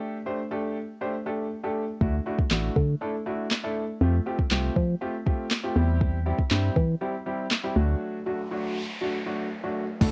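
Bittersweet yet driving, this dance-pop excerpt moves in a straight 4/4 groove, with a home-cassette character and light reverb around it. A concert grand piano opens alone, intimate and close, its action noise audible and its low end deep, with plate reverb and sidechain pumping shaping its chords. At 2.0 seconds a hollow, organ-like FM bass joins, dark and percussive with a fast attack and decaying notes, pumping with the sidechain alongside the piano. The smooth R&B drum kit enters at the same moment, electronic and produced, with a soft kick, sharp snare, crisp hi-hats, handclaps and crash cymbal, all overdriven and colored by cassette tape. The harmony moves through Gsus2, Dadd9, Fadd9 and C/E before settling on D, and a break begins at 8.0 seconds, with a faint electronic noise sweep and downlifter arriving at 8.2 seconds.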